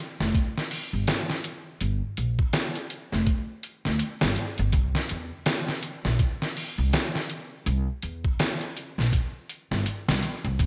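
A gritty, pitched-down sampler-style drum kit with a thumpy kick, medium-tuned snare and hi-hat sits up front, compressed and bathed in studio and gated reverb, entering at 0.2 seconds together with a woody, up-front pizzicato upright bass on steel strings moving between F1 and E2, in this hypnotic, smoky trip hop fragment at 82 BPM in 4/4 with a 60% swing on the 16ths, framed by light reverb and bright 1980s-style digital production.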